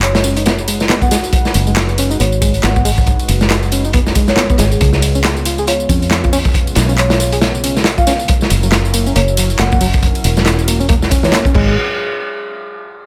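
Opening straight into a drop, this energetic, raw breakbeat cut pairs a gritty, punchy acoustic break kit with a layered electronic garage kit of handclaps, ride and tambourine, under a round, foam-muted fingered bass, a reedy, overdriven electric piano riff through a combo amp from 0.2 s, and, sitting in the background, a swirling detuned sawtooth pad with phaser, chorus and sidechain pumping beside a marimba melody given an old-record sound and dub echo.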